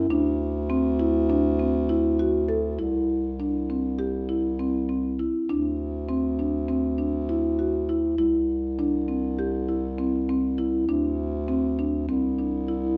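Soft-mallet marimba arpeggios, woody and round, open this shimmering, restless chamber piece in 9/8, sounding over a mellow, softly attacked bass clarinet that holds a low bass line, both parts up front. The harmony moves between D7sus2 and C, touching Csus2/D near 10.9 seconds, as the piece passes from a brief opening section into a longer second one at 2.8 seconds. A recital-hall reverb and dark production surround this short passage cut from a longer work.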